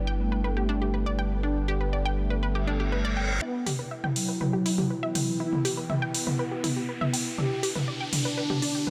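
A straight 4/4 pulse drives this hypnotic, cinematic melodic techno excerpt, anchored from the start by a deep, nasal analog bass up front, while a detuned, resonant sawtooth pad with subtle chorus and a lo-fi, nostalgic tape-like pad with built-in reverb drift in the background. A lush unison pluck spins arpeggios through dub echo, and a brassy, dark synth brass carries the melody with chorus, phaser and dub echo. A reverse cymbal at 2.6 s leads into a build-up with a riser from 3.4 s, and a punchy analog drum machine, re-recorded in a small room, joins at 3.7 s with hi-hat and toms.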